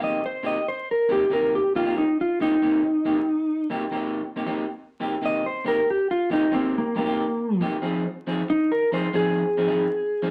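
Blues, mournful and smoky, in C minor at 92 BPM with a swung 4/4 feel: an electric guitar through a small old amp picks a bright, twangy riff, while an up-front electric slide guitar, warm, compressed and slightly broken-up, carries the melody and takes a solo from 5.2 seconds as the harmony moves from Cm7 to Fm7 at 7.8 seconds, the passage sitting in a wet studio reverb under a layer of vinyl crackle.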